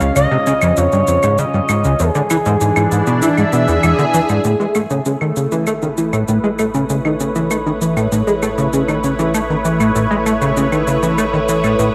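Luminous and expansive, this excerpt of ambient, sequencer-driven space music moves at 98 BPM in a straight 4/4, settling into A lydian from 4.4 s after opening on Dbadd9 and E7 chords. A smooth, expressive sawtooth lead with vibrato sings its melody only until 3.8 s, over a thick, detuned unison pad with chorus and phaser and a punchy, funky analog bass riff with ring modulation, lush chorus and delay, both up front, while electronic cabasa and claves tick through delay. From 4.4 s a round sine sub bass fades in beneath the Aadd9 harmony, and at 5.4 s a breathy, wind-like tuned noise texture drifts in very quietly, all held in a moderate plate reverb.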